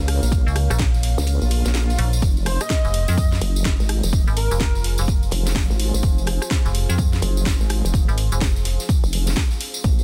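Bass house at 126 BPM in F phrygian, gritty and swaggering, with a swung 16th-note feel, a chord move from Bbm to Fm, and a dense, heavily limited mix that is cut from a longer piece. An up-front, nasal vowel-sweep wobble bass with tube saturation and a metallic, digital FM bass with overdrive drive the track under a deep, moody pad in the background, while a punchy overdriven kick, a house drum kit with cracking snare and bright hats, a jingly close tambourine and a very quiet, dry cocktail kit fill out the groove. The kick drops out at 1.3 seconds as an electronic swell enters in the background, and an airy, dreamy detuned lead with tape echo and vibrato floats in from 2.5 to 4.8 seconds.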